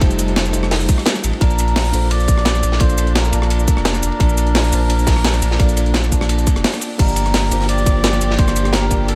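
A small-room sound frames this lush, dreamy liquid drum and bass cut, with a deep, full sub bass up front, touched by tube saturation, under a tight, tape-warm electronic kick. Two breakbeat kits drive the groove: one gritty, compressed and overdriven, with crash, hi-hat, rim click, shaker and snare, and the other dark and rolled-off on top, its hi-hat, ride and snare high-pass filtered. Alongside them, a mellow tine electric piano with digital delay accompanies, while a biting, richly bowed symphonic string section holds chords in the background. At 1.4 s a soft, veiled cup-muted trumpet enters with a distant, jazz-style solo line colored by vibrato and delay, a brief break arrives at 6.6 s, and the groove resumes at 7.0 s.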